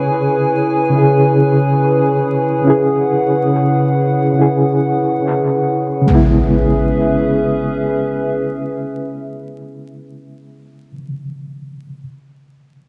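Hypnotic and brooding, this trip hop excerpt moves at a slow 70 BPM in 4/4 with a swung sixteenth-note feel, sitting in C# minor on a C#m7 chord. A bright, reedy electric piano carries the accompaniment up front from the start, lightly overdriven and shimmering with fast tremolo and tape echo before it stops at 12.0 seconds. Alongside it, also up front, a warbling, nostalgic pad holds sustained chords with a slow attack and long release, its detuned, wave-folded tone dark and lo-fi, thickened by chorus and its own reverb. An airy, breathy wind-like texture drifts in the background until 6.1 seconds, when an electronic impact lands up front and carries on to 11.0 seconds. The whole mix is echo-heavy and dusted with vinyl crackle, set in a moderate spring reverb that gives it a hazy, vintage depth.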